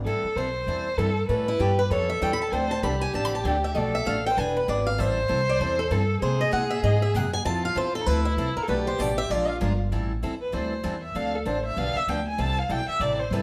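A woody, thumpy upright bass on gut strings opens this bittersweet, virtuosic jazz manouche excerpt, swinging at 195 BPM in A minor, joined at once by a focused, smooth-topped bowed violin with vibrato and a boxy parlour-style picked steel-string guitar accompanying through chords such as Am9, Dm7, E7 and Bb7, while an up-front, bright swing-style picked guitar carries the melody from 1.5 to 9.6 seconds before the violin steps forward to solo from 9.9 seconds, the band playing live together in a large studio with moderate reverb.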